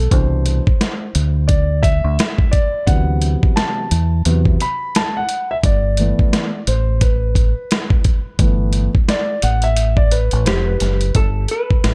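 Dark, dry production frames this cool jazz-hop cut with a swung hip hop groove, where a mellow vintage grand piano, its action noise audible, carries a solo over Cmaj9, D13 and G69 chords, backed by a round, up-front fingered electric bass and a gritty, compressed sampler-style soul drum kit with a thumpy kick, until a clean hollow-body jazz guitar with tape echo slips in at 10.5 seconds.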